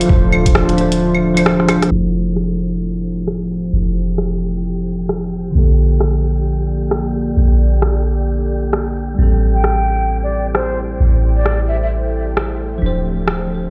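Future garage at 132 BPM with a ghostly, nocturnal mood and swung sixteenths, this excerpt moves from Dm7 through Fmaj7, Bbmaj7 and Am7 as a bell-like tine electric piano, roughened with 12-bit sampler grit and delay, pumps against a deep, warbling chorused pad while both are filter-swept. A soft, round 808-style bass sits up front beneath a layered electronic garage kit of claves, rim clicks and bright hi-hats, and a muffled, thumpy kick appears only briefly at the start before a short drum fill and band accent. An airy, wind-like noise texture rises in at 3.5 s, and a breathy, slightly unsteady silver concert flute with dub echo plays the melody from 9.5 s to 11.9 s, all in a large, reverberant room.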